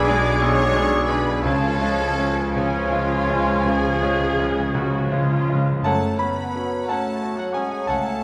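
A bright, up-front concert grand piano carries the melody through this tragic, brooding romantic movement for piano and orchestra, cut from a longer piece in F# minor and 12/8 at a rubato 53-62 BPM, tuned to A4 = 437 Hz. A distant, vibrato-laden violin section also plays the melody, while a rich, close violin section, a mellow cor anglais, a hollow silver flute and a very quiet clarinet carry second lines over a background viola section, a vintage-toned bassoon, dark horn chords, and a bass of woody double basses, a smooth cello section and a soft tuba that stops at 5.6 s. Timpani with calf heads enter at 1.4 s for a fill lasting until 5.8 s as the harmony moves from G#dim/B through C# to F#m, set in a wet recital-hall reverb.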